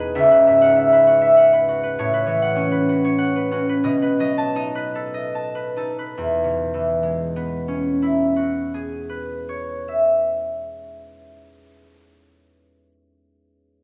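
In a rubato 6/8 that slows between 1.1 and 6.2 seconds, this peaceful, graceful classical piece for solo concert harp, cut from a longer work, has the harp up front, its fingerpicked, ringing tones spanning C#2 to A5 through C#m11, A69 and B9 chords before settling on E69 at 6.2 seconds, all within a recital hall's lingering reverb.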